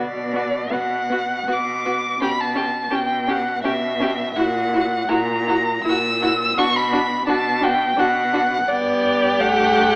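Heard through an AM-radio tone and a wet recital-hall reverb, this tender, lyrical slow romantic movement for string quartet in B minor unfolds in a rubato 3/4 at 83 BPM, its up-front, smooth-topped first violin singing the melody with vibrato and portamento over a rich, distant second violin, a warm viola accompaniment and a soft-attacked, distant cello bass, all four bowed expressively in a passage cut from a longer piece.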